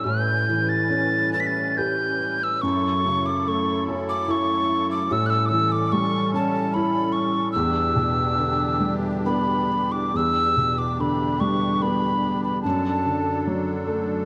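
Bathed in a moderate stage reverb, this longing, haunting Celtic slow air in E dorian drifts rubato in 3/4 at 64-76 BPM, its airy, hollow tin whistle melody with vibrato and tongued chiff sitting up front beside a soft, felt-muted upright piano whose audible action noise lends intimacy, while a reedy, shimmering musette accordion holds dark sustained chords beneath, until the whistle stops at 13.4 s and the piano and accordion carry the excerpt to its cut at 14.3 s.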